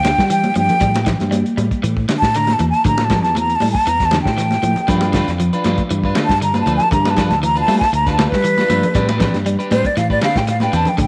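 A breathy, tongued concert flute sings an expressive, up-front solo with vibrato and tape echo from the first second of this joyful, funky afrobeat excerpt at 118 BPM, moving over G, A7sus4, G9 and Am11 chords. Beneath it, a slightly broken-up electric guitar picks background arpeggios through spring reverb, a fingered bass adds a round, amped line, a muffled lo-fi soul kit with a tight kick holds a straight 4/4, and high-tuned congas ring out with hard hands. At 4.9 s a bright, twangy second guitar adds picked stabs bathed in lush chorus, with a moderate echo-chamber reverb giving the whole band a sense of space.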